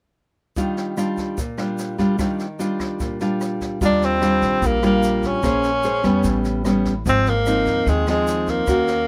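Dry and close, this sunny, sophisticated bossa nova fragment at 148 BPM in Eb major opens at 0.6 seconds with a full-bodied, fingerpicked nylon-string guitar up front, its finger squeak audible, over a brushed jazz kit with a boomy kick, high-tuned snare and rim clicks and a grainy, bright tube shaker in the background, before a warm tenor saxophone solo with vibrato and subtone and a woody, thumpy pizzicato upright bass enter at 3.8 seconds as the harmony moves from Ebmaj9 through Bbm9 and A9 to Ab6.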